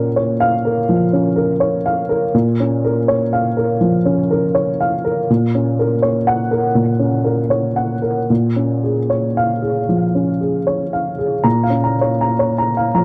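Neoclassical minimalist piano in Bb minor, intimate and wistful, drifts in rubato around 75-84 BPM as a solo upright piano, dark, woody and slightly detuned, sits up front with tape echo in a dry, close 1970s-style studio sound with light reverb, moving from Bbm through Gb/Bb and Bbm7 before returning to Bbm at 11.4 seconds in this short piece cut from a longer work.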